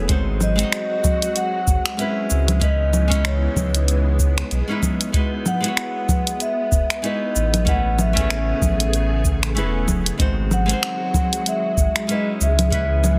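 A round, up-front sine sub bass anchors this smooth, blissful sunset chillout excerpt, joined at 0.1 s by a deep analog kick and a layered deep house kit of congas, finger snaps, hi-hat and shaker, with soft clipping on the snare and a swung sixteenth-note feel. Fingerpicked flamenco guitar with tape echo and a silky vintage string machine, holding sustained chords through ensemble chorus, fill in the harmony, while a mellow vibraphone, played with soft mallets and motor off, carries the melody from 0.4 s, its ringing tone also trailed by tape echo. Light reverb surrounds the parts, and the master is dense and heavily limited.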